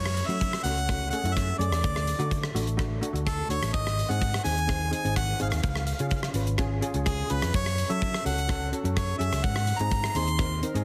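A straight 4/4 calypso groove from a gated 80s drum kit, with its tight kick, hi-hat and rim click up front in a big room, drives this intense snippet of a longer piece, where a bright harmonica sings a classical-style solo melody with light vibrato over an amped fingered electric bass and close-miked, shimmering cello steel pans struck with hard rubber sticks, the whole mix carrying light reverb and a heavily compressed, radio-like sound.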